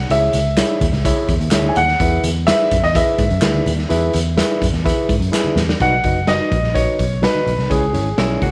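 This urgent, driving 1960s-style soul cut opens with an intimate grand piano carrying the melody, its action noise audible, over a round, foam-muted picked electric bass at an uptempo 126 BPM in straight 4/4, moving from C#m to E. A mellow tine electric piano, a gritty, saturated garage drum kit up front with a punchy kick, faint thin-skinned congas, and compressed tambourine and group handclaps fill out the groove, and the tambourine and claps drop away during a drum fill that begins at 5.3 seconds, just before the music shifts to B. The clean, dark tone of a hollow-body jazz guitar sneaks in with a riff at 8.2 seconds, shortly after the chords return to C#m, all inside a light, small-room ambience.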